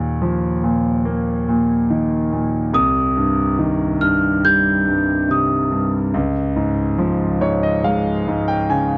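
A bell-like, delicate celesta carries a brief, sweet melody high above the piano from 2.7 to 5.9 seconds in this emotional, heartfelt pop fragment at a slow 71 BPM in straight 4/4. A clear concert grand piano with deep bass and long sustain sits up front as accompaniment throughout, moving from Ebsus2 through Cm to Db and closing with a fill from 7.0 seconds. The sound is dry and close, in the manner of a 1970s studio, touched with light reverb.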